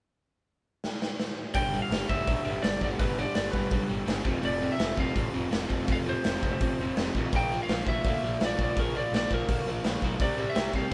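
This is a band playing live in one room, caught with light reverb and cut from a longer punk rock piece in straight 4/4, with a rebellious, rowdy mood. A raw garage drum kit opens with a fill at 0.8 seconds. Its punchy kick, medium-tuned snare and hi-hat sound gritty and saturated in a bright stone room with a pumping ambience, sitting up front with a rolled-off top. A fuzz-laden picked electric bass enters at 1.5 seconds, growly and tucked into the background. At 1.6 seconds a double-tracked, overdriven electric guitar takes up the riff, compressed and forward in the mix, while a twangy, slightly broken-up lead guitar carries the melody above it. The harmony moves through G5, F5, Bb and C.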